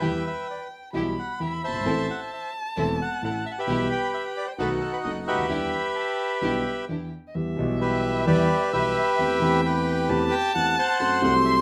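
Dramatic and passionate, this short tango excerpt in E minor moves at 131 BPM with a rubato feel, a reedy, up-front bandoneon carrying the melody over a dark concert grand whose deep bass and audible action noise give the accompaniment an intimate, vintage character. A dark solo violin adds an expressive second line with vibrato and portamento, while a lush, clear string section plays background stabs until about 7.1 seconds. The harmony turns from Em through Am and B7 before closing on F#dim, all set in a moderate club reverb.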